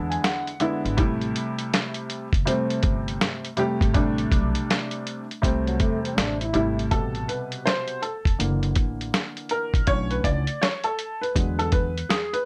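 Smoky and cool, this short excerpt of jazz-hop moves at an unhurried 81 BPM in 4/4, with a swung sixteenth-note feel rooted in A dorian. A worn, slightly detuned upright piano sits up front, opening with a brief fill before settling into chords that move from E7 to Am7. A dark, woody pizzicato upright bass holds the low end beneath a muffled, compressed sampler-style drum kit whose thumpy kick, medium-tuned snare and hi-hat sit prominently in the mix. At 5.7 seconds a breathy trombone briefly takes a second line, its scooped notes and vibrato carried by a slapback echo, until it drops out at 6.9 seconds. From 6.9 seconds the piano takes a solo over an F#7alt and Bm11 that turns back to E7, all held together by a light reverb.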